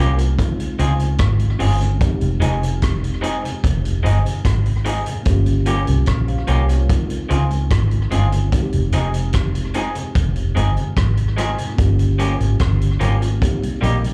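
A dark, round, foam-muted electric bass sits up front in this bittersweet lovers rock reggae excerpt, its punchy, amped tone anchoring a straight 4/4 groove full of longing. A vintage drum kit joins at 0.2 seconds with hi-hat, kick drum and rim click, its kick punchy and its top rolled off in a mid-forward studio-room sound. A slightly broken-up, picked electric guitar through a small old amp plays compressed, lo-fi stabs with slapback echo, while a clean, mellow tine electric piano through its built-in speakers adds gentle accompaniment with its own slapback echo. Beneath them, a very quiet, soft, flute-like tonewheel organ with key click and a slow rotary speaker fills out the harmony. The chords move through Dbmaj7, Fm7 and Gm7b5 twice before landing on Cm7, all heard as a live gig through the venue's PA with a light club reverb.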